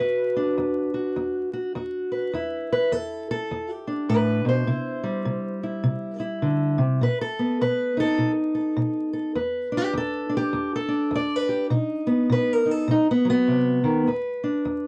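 A fingerpicked steel-string parlour guitar with dark, woody tone and old strings sits up front in this mournful, brooding acoustic country blues excerpt, swinging gently in 4/4 through a close, dry 1970s-style booth sound dusted with vinyl crackle as it moves from Esus2 through C, B7 and Em7 to B before landing on E7(omit3) at 14.1 seconds.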